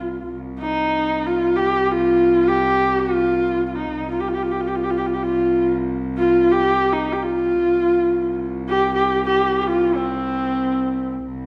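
Vast and solemn, this Mongolian folk excerpt in free time and C yu mode sets a husky, focused horsehead fiddle up front, singing its bowed melody between C4 and G4 with vibrato and portamento, over a quieter, rich cello drone on C2 with a soft attack that sustains to 11.5 seconds, all within a dark production and a recital hall reverb.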